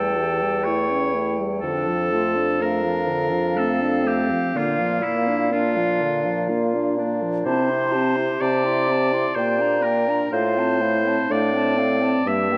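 In a flexible, rubato triple metre, this elegiac, yearning slow movement for wind quintet is heard as a brief passage cut from a longer piece, with all five players sounding from the start to 12.6 seconds. The airy concert flute carries the melody with vibrato and a crisp, close-miked attack, though it sits in the background. The clear oboe's second line and the roomy bassoon's bass stand up front, over bright clarinet and gently vibrato-tinged French horn accompaniment moving from A7/E through Dm/F, Bb, Am/C and Gm/Bb to F/A, all within a dark production and moderate concert-hall reverb.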